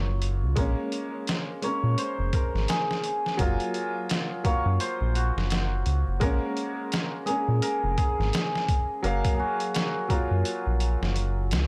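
Trip hop at 85 BPM in Bb minor, this melancholic, brooding excerpt from a longer piece moves in 4/4 with a swung sixteenth-note feel, tuned slightly sharp to A4 = 442 Hz. A hammered, shimmering cimbalom carries the melody from the start, its ringing tone roughened by vintage 12-bit sampler grit and trailed by tape echo. Beneath it, a felt-muted upright piano supplies soft, intimate accompaniment with a thin felt character, harmonic tremolo and its own tape echo, while a round, deep analog bass sits up front with a dark, sustained, evolving tone. The sampler-style drum kit enters at 0.2 seconds, pitched down and compressed, with a thumpy kick, medium-tuned snare and hi-hat pushed through gritty overdrive. The harmony sways between Gbmaj7 and Bbm7 throughout, and a small room ambience wraps the whole arrangement in a close space.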